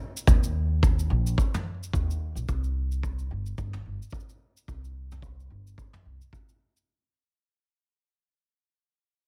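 A swung 109 BPM groove in 4/4 drives this short, warm, pastoral folktronica excerpt, where a punchy, gritty, saturated kick drum with a rolled-off top sits up front beside a woody pizzicato upright bass on steel strings, while faint cabasa and toms played with brushes add natural studio-room texture in a dry mix that fades out across its 6.9 seconds.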